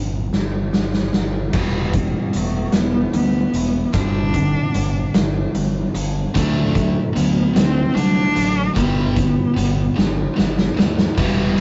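Dark and angsty, this short passage of quiet-loud alternative rock moves at a slow 50 BPM in a straight 6/8, cut from a longer piece. A very quiet, compressed electric guitar through a small old amp picks arpeggios alongside a growling, punchy fingered bass with overdrive, while an oversized, low-tuned acoustic kit comes in at 0.3 seconds with a fill, its pumping big-room sound, dark cymbals and gritty, saturated kick and snare sitting up front. At 1.5 seconds a crunchy overdriven guitar enters in the background with a riff, and a moment later, at 1.6 seconds, a rich, bowed solo cello takes the melody with expressive vibrato and portamento. A bright, high-gain distorted guitar joins the riffing at 6.3 seconds as the chords move through Em7, Gadd9 and D, and a second drum fill arrives near the end. The rough rehearsal-room recording has a short booth ambience and a rolled-off top end that keeps the whole thing murky.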